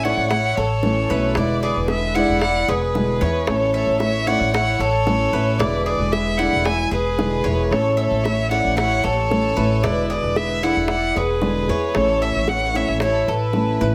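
Sunny and relaxed, this fragment of a longer Cuban son and guajira piece moves in a straight, easy four across its 13.9 seconds, with every part playing from start to finish. Up front, a single bowed violin carries the melody with a smooth, even vibrato and a nasal, boxy tone, touched by a slapback echo. Behind it, a symphonic violin section plays a second line sul tasto, its soft attack giving a pure, floating sound that sits close yet in the background. A dark, small-sounding nylon-string guitar is fingerpicked as accompaniment, while a picked Cuban tres adds arpeggios with the metallic shimmer of its double strings, some of them octave-doubled. A woody pizzicato upright bass anchors the low end up front, and tight, high-tuned bongos played with soft hands stay dry and close in the background, all set in a moderate studio reverb.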